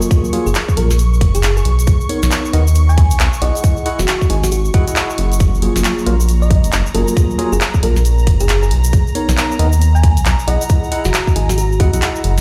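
A swung two-step garage groove at 136 BPM opens this sunny, soulful cut from a longer piece in F# major, with a tight, up-front electronic kick entering at 0.1 s alongside a punchy analog drum machine's handclaps, hi-hat and snare and a grainy, bright tube shaker recorded close and dry. A rubbery, hollow square bass arrives at 0.5 s, while a clean tine electric piano plays delayed stabs and a round, tine-like thumb-piano-style synth pluck carries the chorused, echoing melody. An ethereal, airy pad holds mellow, pumping chords over a F#maj9, Bmaj9, Emaj9 progression, all set in the stone-room reverb of a big sound system in a bare room.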